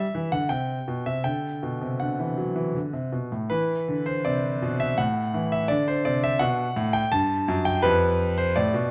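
A playful, cheerful classical-period piano sonatina in 3/4, played with a flexible rubato feel on a solo concert grand that sounds intimate and polished, with deep bass, up-front presence and audible action noise. Heard through close, detailed microphones in a recital hall with moderate reverb, this short 8.9-second cut from a longer piece moves through a shifting chord progression before arriving on a G7/F near its close.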